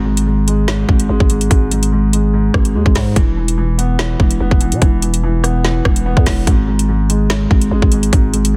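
A dry, dense and heavily limited mix carries this cold, tense drill excerpt in G# minor, set at 145 BPM with a half-time feel and a harmony that moves from G#5 to E5 and back to G#5. A dark, boxy concert grand piano with long sustain holds the low accompaniment beside a growling, buzzy 808-style bass with a fast attack and decaying tail. From 0.2 seconds, an up-front electronic drum kit adds a hard-clipped kick, a woody snare, rim clicks and metallic hi-hats with a tape-warm edge.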